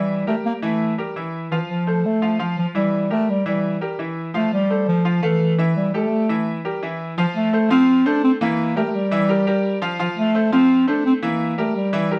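Festive and danceable, this latin excerpt moves at a brisk 170 BPM in straight 4/4, centred on F major. A dark, smooth-topped bass clarinet carries the melody in a classical style, sitting up front as the solo voice. A bright concert grand piano provides the accompaniment, its brilliant tone carrying a deep bass, present and up front alongside the clarinet. Both instruments play throughout, as a band performing live in one room with a moderate studio reverb. The harmony alternates between Edim and Fmaj7, with a brief Emadd11 before the second section begins at 7.2 seconds and the pairing of Fmaj7 and Edim returns.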